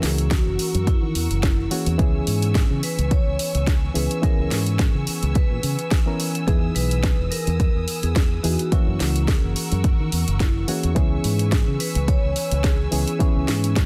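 A swung 4/4 groove at 107 BPM drives this sensual, sleek nu-disco excerpt in C# dorian, with a punchy, overdriven electronic kick sitting up front from 0.3 seconds and a house kit adding a cracking snare and bright hi-hats with their own overdrive. Underneath, a fingered electric bass runs through an envelope filter and tube saturation, sounding bright, direct and amped, and pumping against the kick. A reedy, slightly out-of-tune electric piano plays accompaniment through its built-in speakers, worn yet clean in tone. A lush studio string section holds sustained chords with vibrato and a smooth top, roughened by vintage 12-bit sampler grit and sidechain pumping, and sits lower in the mix. Meanwhile, a vibraphone struck with medium hard mallets and the motor off carries the melody, its metallic, ringing, airy tone trailed by tape echo. The chords move from F#7 to C#m7, Emaj7 and back, in a dry, dense and heavily limited modern mix.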